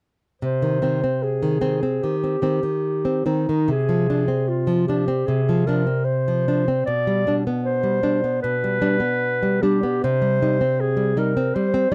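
A dry, close studio sound with a light touch of reverb and a 1970s character frames this elegiac, melancholic romantic duo for clarinet and classical guitar, heard as a short passage cut from a longer piece. The clarinet carries the melody with a clear tone, soft attack and smooth top, playing in a classical, soloistic style up front, while the fingerpicked nylon-string guitar supplies bright, small-bodied accompaniment just as close. Both parts enter together at 0.4 seconds and move with rubato and uneven beats through a Cm, Dm7b5/C, G/B and back to Cm progression, ending at 11.9 seconds.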